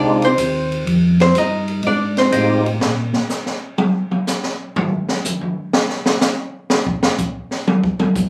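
Caught on a phone in a smoky club with moderate reverb and compression, this soul jazz organ trio excerpt swings at 123 BPM in F dorian, as a percussive, fat tonewheel organ with key click, chorus vibrato and slow rotary speaker carries the melody over picked hollow-body archtop guitar and a round, dark organ bass line on an Fm7 chord until about 2.6 s, while the open jazz drum kit, with its dark cymbals, high-tuned snare and boomy kick, joins at 0.2 s and then takes a solo from 2.8 s to 8.3 s.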